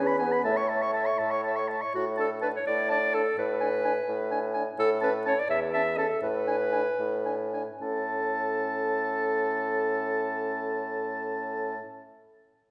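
A hollow, airy flute with vibrato sounds from the very start of this cheerful, lively classical-period wind quintet movement in A major together with the other parts, carrying the melody in the background only until 1.6 s, while an up-front warm oboe sings the second line, a close-miked clear clarinet and a soft-attacked mellow bassoon bass support it, and a distant, roomy French horn adds accompaniment, all moving in a quick, rubato 6/8 at 72-86 BPM that slows between 4.1 and 7.8 s within a wet scoring-stage reverb, in a passage cut from a longer piece.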